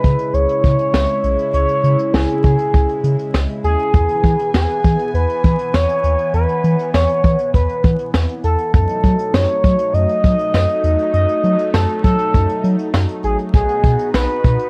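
A straight 4/4 groove from an up-front jazz brush kit, with its boomy kick and high-tuned snare in a small room, drives this cool synth-pop excerpt as a round, deep analog bass with a filter sweep sits beneath a swirling, detuned pad treated with phaser and chorus, while a smooth, expressive sawtooth lead with vibrato carries the melody through chorus, analog delay and plate reverb over C#m, E, D#dim and B, the whole recording coloured by light reverb, worn cassette warble, pitch drift and vinyl crackle.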